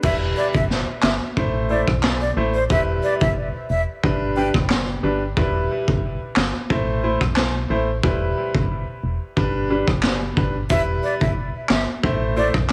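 A breathy, mellow jazz flute carries the melody of this tough, hypnotic dancehall groove. Its close-miked, expressive tone shows vibrato and a tongued chiff, and it plays from the start until 4.5 seconds, then returns at 10.7 seconds, trailing dub echo. Underneath, a bright concert grand piano sits up front with brilliant, polished, short-sustained accompaniment and a deep bass tone, pumping with sidechain movement and throwing its own dub echo. An organ-like FM bass with a hollow, percussive attack and dark decay holds down the low end throughout. The raw garage drum kit is the loudest part, with a punchy kick, a medium-tuned snare, rim clicks, handclaps and crash cymbal, all saturated with gritty 12-bit sampler texture and a rolled-off top. The echo-heavy mix has light reverb and small room ambience, and the passage is cut from a longer piece.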